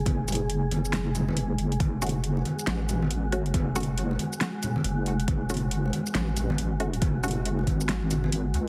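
Cavernous and meditative, this deep dubstep excerpt moves at 138 BPM in a swung half-time feel in F# minor, with a dark, detuned wobble bass under chorus sitting up front beside a deep, tape-warm electronic kick, while a deep house kit of fat snare, metallic hats and shaker, distant ringing congas and bongos played with soft hands, and an airy, breathy wind-like texture fill the space, before a muted, resonant dub chord stab with phaser and dub echo enters at 2.0 seconds and stops at 7.3 seconds, all within a heavily compressed, radio-like sound.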